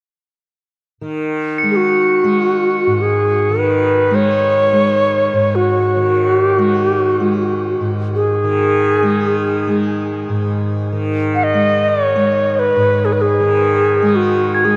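A buzzing, softly plucked tanpura drone opens this haunting, spacious piece of free-time world meditation music at 1.0 s, tuned to A4 = 437 Hz and sitting up front. Just after, high, bell-like crotales struck with hard rubber mallets enter at 1.6 s, ringing mellow and dark through a shimmer reverb. At 1.7 s a reedy, airy cedar flute in the Native American style takes the melody up front, with vibrato, tongued notes, rolled-off highs and shimmer reverb, all bathed in a huge ambient reverb with a cassette-tape character in this excerpt cut from a longer piece.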